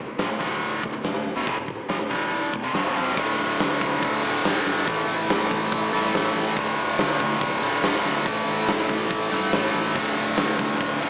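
A biting, overdriven electric guitar leads this aggressive, menacing hard rock excerpt, its bright, picked, double-tracked riff sitting up front with a touch of spring reverb. The drums come in at 0.2 s: a huge acoustic arena kit with bright cymbals, a medium-tuned snare and a boomy kick, also placed up front, with crash, hi-hat, kick and snare all in play. Underneath, a fingered electric bass adds an amped, punchy low end from the background. The piece is in D minor at 142 BPM in a straight 4/4, tuned to A4 = 435 Hz. It opens on a D minor chord, then at 3.2 s shifts into a stretch of D5 and A5 power chords. A wet, lush hall reverb and a big arena sound frame the mix, though it also carries a small-speaker quality.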